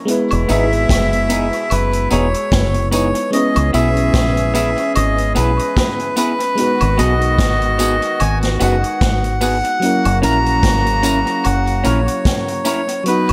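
A reedy, breathy melodica carries the tune up front from 0.5 s, trailing dub echo over a smooth, bittersweet lovers rock groove at 74 BPM with a swung sixteenth feel, moving through Emaj7, C#m7, G#m7 and F#7. Beneath it, a deep, round fingered electric bass sits forward, a vintage acoustic drum kit with a punchy kick and gated reverb keeps time, and a glassy, bell-like FM electric piano with chorus and echo provides the accompaniment. Slightly broken-up guitar stabs through a small old amp, a tight horn section in the background, and compressed woodblock and tambourine with echo complete this excerpt, all set in a light small-room ambience.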